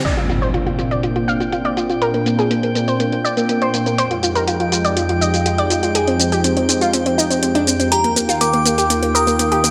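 This excerpt from a progressive house track opens on a full band accent and an electronic impact, which rings through the first 2.0 seconds while a lush, thick unison pad holds sustained chords, moving from Bbadd9 to Fm7 and then Ebadd9. A round, detuned analog pluck sits up front with bright, fast-attack arpeggios carried by chorus and delay. A deep house drum kit with metallic, overdriven hats, crash and shaker runs under a filter sweep across the whole passage, as does the pluck. From 0.6 seconds a calm, drifting glass-harmonics texture hovers on a high G5, and at 7.9 seconds a crystalline FM synth bell enters with a decaying melody. A moderate hall reverb wraps the parts in a dreamy, emotional space.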